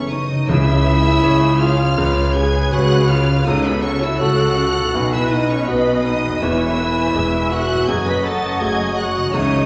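Cinematic, emotional film score in C# minor at a rubato 81 BPM, sorrowful and longing, where a lush, vibrato-rich violin section sings the high melody over a clear solo clarinet, airy flute ensemble, second violins, a mellow cor anglais entering at 0.1 s, smooth violas, a polished background baby grand piano, dark distant French horns holding chords, ringing fingerpicked harp arpeggios, focused cellos and distant double basses, with very quiet dry timpani marking 0.5 to 3.1 s and returning at 9.4 s, all moving through C#m, F#m/C#, B and E chords in a reverberant recital-hall space in this brief excerpt cut from a longer piece.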